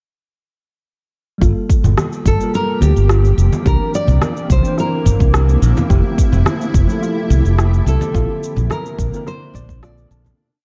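A wistful sunset chillout groove opens at 1.4 seconds with a deep, soft electronic kick, a light lounge beat of cabasa and rim click, a bright, growly, punchy fingered bass riff up front, a worn, slightly out-of-tune tine electric piano holding lightly overdriven chords with syncopated pushes through tape echo, and a soft, round pluck cycling a 6-step arpeggio that drifts against the bar in the background; ringing congas, a shimmering, ethereal pad with octave-up shimmer, and a dark, fingerpicked nylon-string guitar spinning a free melody with finger squeak then join over a Gm9, C9, Fmaj9 and Bbmaj9 progression before the piece fades out from 7.4 seconds in a dark, lightly reverberant mix.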